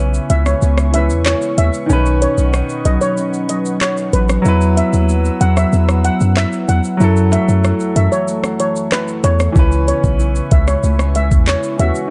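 Hypnotic and sultry, this dancehall passage, cut from a longer piece, sits in a break for its first 9.6 seconds over a C#m7, Badd9, Esus2 and F#m7 progression. A soft steel pan, struck with rubber sticks, carries the shimmering metallic melody through a tape echo, while a clear, present grand piano supplies accompaniment beneath it. A clean, fingered electric guitar, dark and compressed, plays arpeggios through a lush chorus, and a smooth, detuned sawtooth pad holds slow-attack chords in the background with chorus and sidechain pumping. Up front, a deep, boomy 808-style bass with a sine tone, a noise layer and a fast, decaying attack anchors the low end alongside a produced electronic afro-pop kit of knocking kick, metallic hi-hat, handclaps, rim click and shaker. A very quiet layer of bright, saturated egg shaker and timbales, played with soft hands, adds texture, all within a close, dry mix whose production stays dark and warm.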